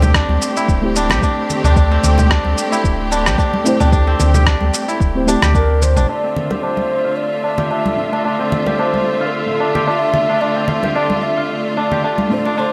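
A crisp, ringing kora plays fingerpicked arpeggios in this mystical organic downtempo piece in D minor at 111 BPM, set over lush bowed symphonic strings, a dark, nasal chord stab with chorus and tape echo, and a round sub bass, while gritty, overdriven electronic congas, shaker and rim click, bright hand-played congas and bongos, and a soft electronic kick carry the groove. The kick falls away at 5.7 seconds, and the bass and the electronic congas, shaker and rim click drop out at 6.1 seconds, by which point a breathy, expressive ney has entered at 5.6 seconds with a delayed melody as filter sweeps move across the kora and stab.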